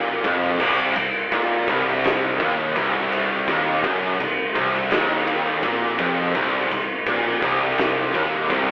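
A bright, double-tracked high-gain guitar opens this short stoner and doom metal cut up front, with two thick fuzz guitars picking the same low riff beneath it, one very quiet and warm, the other dark and sitting in the background. A round, hollow-body fingered electric bass adds an overdriven low end from far back in the mix. At 0.2 seconds an oversized, low-tuned acoustic drum kit arrives up front, its boomy kick, fat snare and dark crash and ride cymbals sounding saturated and gritty in a big, pumping room. The feel is straight and hypnotic, parked on a single C minor chord as the sludgy riff churns on. The band sounds like it is playing live together in one room under light reverb, with a narrow, telephone-like tone over the whole recording.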